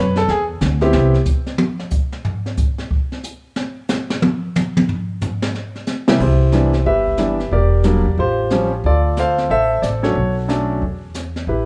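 A swung 4/4 at 182 BPM drives this relaxed, swinging jazz piano trio fragment in C major, cut from a longer piece. A clear concert grand piano with deep bass and a woody, pizzicato upright bass on steel strings open together before both drop out at 1.1 seconds. The brushed drum kit then carries a solo on its own, its dark cymbals, high-tuned snare, boomy kick and toms sounding smooth with a rolled-off top. The piano returns at 6.1 seconds and the bass at 6.2 seconds for the second section, moving through Cmaj9, Em7b5, A7alt, Dm9 and Bm9. All three instruments sit up front, with the piano natural, the bass warm and the kit carrying a small-room character. Moderate large-studio reverb places the band playing live in one room, and the overall sound stays soft at the very top.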